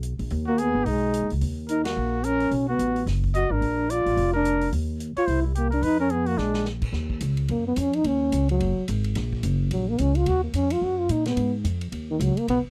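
Moody and swinging, this brisk small-group jazz piece in the swing-and-bop vein moves at 217 BPM in Eb minor, cut from a longer performance. A dark, forceful trombone carries the melody up front with a light vibrato and a punchy, close-miked edge, joined by a trumpet whose vibrato, scooped notes and smooth top form a second line until 6.7 seconds. Underneath, a woody pizzicato upright bass with steel strings sits prominently, while a swinging big-band kit of ride, hi-hat, snare, punchy kick and crash sounds natural and roomy further back. A band accent lands at 1.8 seconds and a drum fill at 6.4 seconds sets up the second half, where the trombone takes a solo from 6.9 seconds over the bass and drums. The sound is a dry, close 1970s-style studio recording, with harmony shifting through chords such as Abm, Ebm7, C7 and Bb7.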